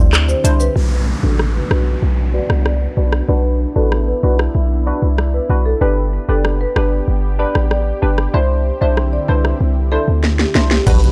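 A straight 4/4 dancehall groove at 95 BPM drives this hypnotic, sultry clip from a longer piece in B phrygian. Up front, an electronic afro-pop kit carries a knocking kick, sharp snare, crisp hats, handclaps, rim clicks, shaker and crash, all roughened by vintage 12-bit sampler grit. A deep, boomy 808-style sine bass with a noise layer sits alongside it. A woody marimba played with medium mallets carries the melody through a low-pass filter and analog delay, with a boxy small-room tone. Above the harmony of Cadd9, Bm, G and back to Cadd9, a dark, detuned wavetable chord stab plucks through its own low-pass filter, while a lush, thick sawtooth pad pumps in the background with chorus and its own filter. A barely audible cabasa appears near the start, an electronic downlifter runs from 0.8 to 5.8 seconds, a filter sweep spans the section, and a drum fill from 10.2 seconds leads to an impact at 10.9 seconds, all in a dry, gritty hardware sound with transformer saturation.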